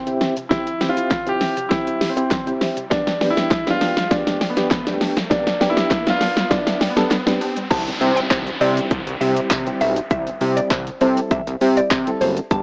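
Dance-pop, upbeat and euphoric, in which a warm concert grand piano with audible action noise carries the melody over soft, round electric-piano-like synth keys with chorus and tremolo, a very quiet woody synth pluck's arpeggios, a crisp group handclap, very quiet risers and an overdriven, punchy pop drum kit with a fat snare and metallic hats through a build-up until the drop at 7.7 seconds, where a mellow, woody synth pluck with phaser takes the melody over a thick, detuned sawtooth analog bass with sidechain pumping, all in a dry, gritty recording with an AM radio sound.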